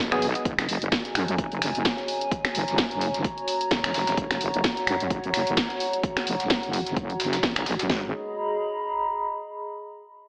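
A gritty, AM-radio-filtered sound sits inside a moderate, lush hall reverb, giving this bouncy bass house excerpt a swung sixteenth-note feel in 4/4. Up front, a heavy, wobbling bass built from detuned sawtooth and sine tones growls with saturation, overdrive and chorus, pumping against the sidechain from the very start. A warbling, lo-fi, nostalgic square-and-triangle pad floats above it, also sidechained and soaked in its own reverb, lingering alone after the other parts stop near 8.1 seconds. Two layered house drum kits drive the groove with a punchy kick, cracking snares, hi-hats and finger snaps, all tape-warm and re-recorded in a large room, while a very quiet, overdriven sampler-style kit adds dusty hi-hat and snare grit beneath. Deep in the background, a very quiet, moody analog pad with a sub octave holds sustained chords from F# before the harmony shifts to G#m7 at 7.9 seconds for a brief closing section.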